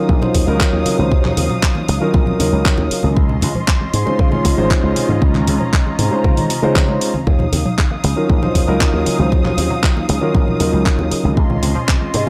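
A punchy, up-front electronic kick and a tape-warm house kit of handclaps and hi-hat, both re-recorded in a large room, drive this straight 4/4 nu-disco groove at 117 BPM in Eb dorian, with very quiet soft-handed congas underneath and a bright, growly slap bass with an envelope filter entering at 0.1 s. Over Ebm9 and Dbmaj9 chords, a dark, mellow grand piano with audible action noise plays the accompaniment through vintage 12-bit sampler grit, sidechain pumping and tape echo, while a woody string section with soft attack and light vibrato holds pumping sustained chords. A very quiet, detuned analog pluck with chorus and a filter sweep adds low arpeggios, giving this cosmic, sleek excerpt from a longer piece its dry, gritty hardware sheen.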